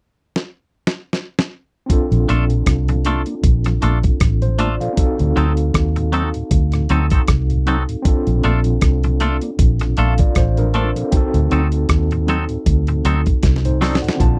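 A 78 BPM lovers rock reggae groove in Bb major, swung on the sixteenths, opens at 0.4 seconds with a gritty, thumpy sampler-style drum kit playing a fill of kick, snare, rim click and hi-hat, joined at 1.9 seconds by a barky, overdriven tine electric piano with tremolo and tape echo as the chords move between Bbmaj7 and D7b9. A dark, foam-muted fingered bass sits up front with the drums, while a bright, twangy electric guitar adds clean picked stabs and a soft, flute-like tonewheel organ with chorus vibrato and key click hums in the background. The tender, smooth mood is captured in a dry, close 1970s-style studio sound, and the cut closes on another drum fill at 13.4 seconds.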